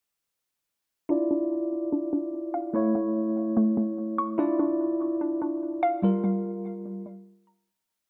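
This is a hip hop piece in D harmonic minor at 146 BPM in 4/4 with a half-time feel, and its mood is dark and menacing. The whole track is a short breakdown running from 1.1 to 7.7 seconds, with both parts playing throughout over the chords Dmadd9, A, Dmadd9 and Gm7. A clean, up-front tine electric piano holds spread-voiced chords as accompaniment, repeated like a sampled loop and sounding as if heard through built-in speakers, with a low-pass filter on it. Over it, a hollow, bouncy square-wave pluck plays a detuned, patterned eighth-note arpeggio, also repeated like a sampled loop. The pluck has a fast attack and decaying tail, and it is shaded by chorus, delay and a low-pass filter that sweeps across the piece. Light reverb gives a digital ambience, and the track fades out from 6.0 seconds to the end.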